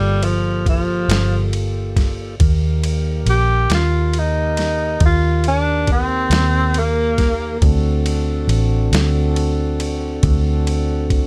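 Slow blues in 12/8 at 46 BPM, smoky and soulful, cut from a longer piece: a breathy, whispered tenor saxophone carries the melody up front with subtone, vibrato and scooped notes over Gm9, Eb and D7, stopping at 7.6 s. A clean tonewheel organ holds sustained chords through a slow rotary speaker, while a dark, round, foam-muted electric bass sits up front. A gritty, pitched-down sampler-style boom bap kit enters at 0.2 s with a thumpy kick, medium-tuned snare and ride cymbal, and the mix carries little reverb.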